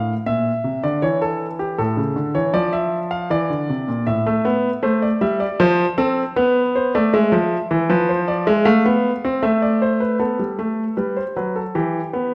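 In a straight 4/4, this joyful, lively baroque-style two-part invention for solo grand piano moves through a brief classical passage cut from a longer piece, with a new section taking over at 10.2 seconds before it breaks off at 12.3 seconds. The piano sits up front with an intimate, natural tone, long sustain and audible action noise, ranging from A2 to F5. A wet recital hall reverb with a 1.6-second decay surrounds the instrument.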